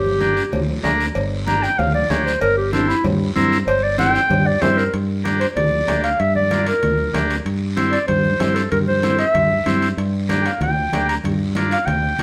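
A driving, straight 4/4 cumbia pulse at 190 BPM in G dorian carries this passionate excerpt, with a soft-attack, smooth-topped clarinet up front on the melody and soloing through the first 4.9 seconds, over a punchy fingered electric bass, a buzzy vintage combo organ, distant thick-skinned congas, a raspy dry guiro and ringing metal-shell cowbell and timbales, the band playing live together in a stone room as the chords move between Gm and C/G.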